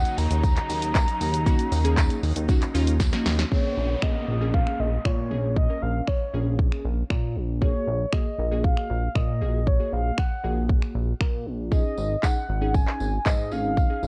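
A punchy, up-front house drum kit of kick, snare, bright hi-hat, handclaps, finger snaps and shaker drives this confident yet bittersweet dance-pop excerpt in Bb minor at 117 BPM, with a drum fill at 3.0 seconds, alongside a glossy, retro chorused synth bass that pumps with sidechain. A mellow, horn-like sawtooth lead with vibrato carries the melody over glassy, detuned digital keys, while a filtered supersaw swell holds sustained chords in the background until 3.5 seconds, a downlifter sweeps through the middle, and a jingly tambourine sits low at the start and again from 11.7 seconds. The recording has a worn, warbling old-cassette character with drifting pitch, moving through Ebm7, Bbm7, Gbadd9/Bb and Absus4.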